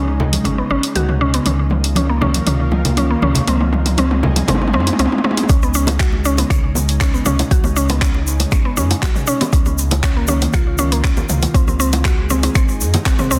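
An overdriven, up-front electronic kick drum lands at the drop at 5.5 seconds in this driving, earthy afro house excerpt, arriving together with round, low-tuned bongos and a grainy egg shaker. They join an overdriven deep house kit of finger snaps, handclaps, hi-hat and toms, a woody, detuned mallet-like synth pluck arpeggiating through chorus and delay, a deep sine sub bass, and an ethereal, airy pad holding chords in the background. Ringing congas have already played through the build-up until 4.8 seconds, and the bass, pluck and pad all pump from sidechain compression.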